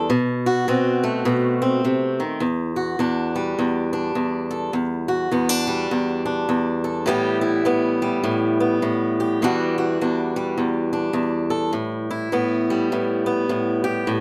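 A close, dry and detailed recording puts a bright, boxy fingerpicked acoustic guitar with fresh strings up front, playing alone in a smoky, mournful swing blues excerpt that opens on a B7 chord before settling into Em9 and Asus2 from 2.4 seconds.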